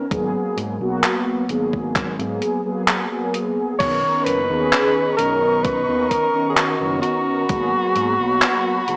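A breathy alto saxophone carries the melody from 3.8 seconds, clear and up front, with jazz-style vibrato, scooped notes and a soft attack, trailed by tape echo. This short vaporwave fragment, cut from a longer piece, drifts at a slow 65 BPM in G# minor with a nostalgic, woozy mood, moving from G#m9 to Bmaj9 and back. Mellow synth brass opens the passage with detuned sawtooth chords that are round, brassy and dark, shaped by a filter sweep and colored by subtle chorus and analog delay. An overdriven fingered electric bass sits low and amped beneath, while a gated 80s digital drum machine puts crash cymbal, handclaps and hi-hat up front alongside a thumpy, sampler-style electronic kick that drops out at 7.7 seconds. With the saxophone, a rich studio string section enters and bows sustained, biting chords with vibrato high above. The whole track sits in a moderate concert hall reverb, with the hazy character of cassette tape heard through a small speaker.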